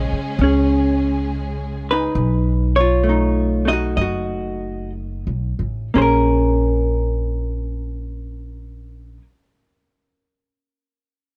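A dark, clean, compressed hollow-body electric guitar, thumpy, woody pizzicato upright bass and a lush bowed string section with soft-attack vibrato open this intimate, wistful jazz ballad in Bb minor, a swung 4/4 passage at 57-72 BPM that slows over its first 6.0 seconds; the strings drop out at 2.1 seconds, and the up-front picked guitar and bass carry the Bbm9, B7 and Bbm7 harmony through a dry sound until 9.2 seconds.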